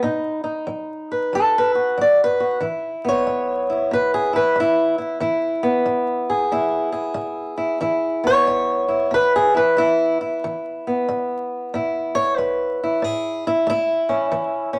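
Swaggering and soulful, this short cut from a longer acoustic country blues piece moves at 92 BPM in 4/4 with a moderate swing on the eighth notes, set in E major. A single fingerpicked steel-string acoustic guitar carries everything, sounding bright and boxy and placed up front in the mix, ranging from A2 to D5. It opens on a B chord before settling onto E at 2.6 seconds, where the guitar launches into a solo that runs to the end. A move to A arrives at 13.0 seconds, late in the swaggering line. The sound sits in a wet studio reverb with a bed of vinyl crackle, giving the performance a dusty, old-record character.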